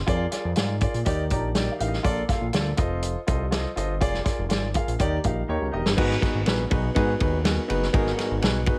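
A grand piano sits up front in this short cut from an uptempo 1960s-style soul piece. Its intimate, natural tone carries audible action noise, long sustain and plate reverb as it plays accompaniment from G#2 to C6, adding a fill between 1.1 and 2.0 seconds. The feel is driving and urgent at 122 BPM in a straight 4/4, with the harmony moving through Bb7/F, Ebmaj7, Bbmaj7 and F7 before turning to G#m7 at 6.0 seconds, where a new section begins. An acoustic drum kit, recorded in a tight booth with a mid-forward, rolled-off sound, brings dark cymbals across crash, hi-hat and ride, a medium-tuned snare and a punchy kick, and plays a fill leading into that second section. Underneath, a fat analog bass built from detuned sawtooth and square waves gives a nasal filter pluck with fast attack and sustained notes between E1 and Bb2. Light reverb lends the mix a gentle sense of space.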